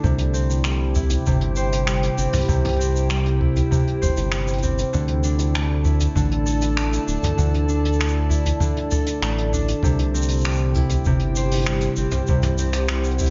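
With light reverb, studio ambience and a top end that stops at 7.5 kHz, this hopeful folktronica excerpt at 98 BPM in 4/4 places a bright, ringing concert harp up front playing arpeggios coloured by vintage 12-bit sampler grit and tape echo, over a round, deep analog bass, while a nostalgic, warbling tape-like pad holds sustained chords through chorus, built-in reverb and phaser, a boomy kick sits in the background, and a dark, smooth brush kit adds finger snaps, hi-hat, shaker and toms as the harmony moves from C to Dsus2 at 4.9 seconds and back to C at 9.8 seconds.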